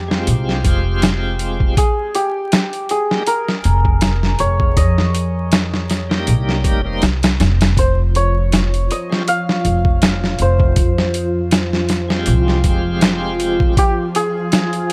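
A dry recording under a layer of vinyl crackle carries smoky, brooding trip hop at 80 BPM in F minor with swung 16ths, where a shimmering hammered santur melody with tape echo rides over a woody pizzicato upright bass and a gritty, pitched-down boom bap sampler-style kit with a thumpy kick, while a bright, shouting tonewheel organ with light overdrive, slow rotary speaker, tremolo and tape echo fills in the harmony, and a mellow string machine of cellos with ensemble chorus joins at 7.8 s with slow-attack sustained chords.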